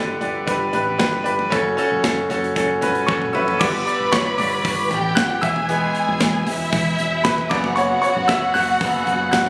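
A bright grand piano opens this piano-driven pop passage, cut from a longer piece, with its action noise audible in an intimate, up-front sound, while a round, dark fingered electric bass sits low beneath it and a modern acoustic drum kit with a tight kick and medium-tuned snare joins almost at once. The mood is driving and bittersweet at a steady 115 BPM in a straight 4/4, as the harmony moves from G to F#m. A drum fill at 3.1 seconds leads into a new section at 3.6 seconds, where the piano takes a solo over chords of G, E and Bsus2/F#. At that same moment a rich studio violin section enters as a second line, its focused, bowed ensemble tone carrying vibrato and a tape echo. The whole is compressed and set in a moderate large studio reverb with a small-room ambience, captured on a phone in the room.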